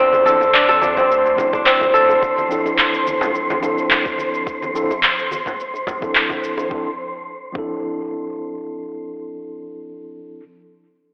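A loosely swung 4/4 groove at 107 BPM opens with up-front electronic shaker and handclaps, ringing hard-hand congas and bongos, and a soft electronic kick from 1.0 s, setting a hypnotic, mystical organic downtempo mood in D minor on a Dm7 chord. A crisp, fingerpicked kora plays bright delayed arpeggios in the first seconds, a gliding sawtooth synth bass with portamento sits in the background, and an airy, breathy wind-like noise layer hangs on a single high note until 6.7 s. A mellow tine electric piano, pumping and delayed, carries the accompaniment through a filter sweep and plays on alone after the kick stops at 7.7 s, all in a wet concert-hall reverb with a blown-out, overdriven, telephone-like sound in this fragment of a longer piece.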